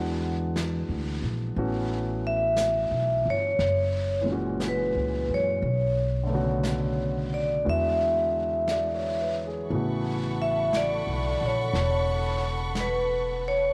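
At 59 BPM in 4/4 with a 66% swing on the eighth notes, this romantic, intimate jazz ballad in A major unfolds as a short cut from a longer piece. A ringing, metallic vibraphone played with medium mallets carries the melody up front, its slow motor vibrato and slapback echo giving each note a shimmering tail. Beneath it, a baby grand piano with long sustain supplies the accompaniment, while a woody, growly upright bass, plucked on steel strings, anchors the low end with a thumpy, close presence. A vintage brush kit enters at 0.6 seconds, quiet and smooth, its brushed snare and hi-hat dark with a rolled-off top, as the harmony moves through E7, A69, F#7 and Bm7. When the opening phrase returns at 9.7 seconds, a studio string section joins with bowed, sul tasto chords, soft in attack and gently vibrato, settling on A69 under light reverb.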